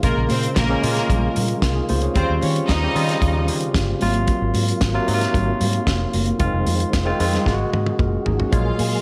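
Glamorous and driving, this short disco cut at 113 BPM rides a fat-snared soul drum kit with a drum fill at 7.5 seconds, a round, foam-muted fingered bass, a barky, lightly overdriven tine electric piano up front, a mellow tonewheel organ with fast rotary speaker and key click holding sustained chords in the background, very quiet high-tuned congas, and a lush, clear string section that drops out at 3.4 seconds and returns at 8.5 seconds over chords moving from Bbm7 through Eb13, Ab13 and Fm7 to Ab9sus4.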